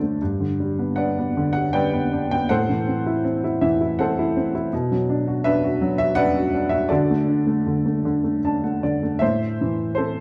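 Dark and reflective, this brief fragment of a longer classical piece is a lyrical solo for baby grand piano in A dorian. It moves in an unhurried 3/4 at roughly 75-84 BPM, with a rubato feel that lets the phrasing breathe. The piano has a worn, boxy, intimate character and sits up front, with the audible noise of its action close at hand, spanning from G2 up to A5. The harmony passes through G, Am, Bm and D before settling back on Am at 9.2 seconds, just after a short piano fill that begins at 8.0 seconds. A moderate concert hall reverb surrounds the instrument, and the overall production leans dark and warm.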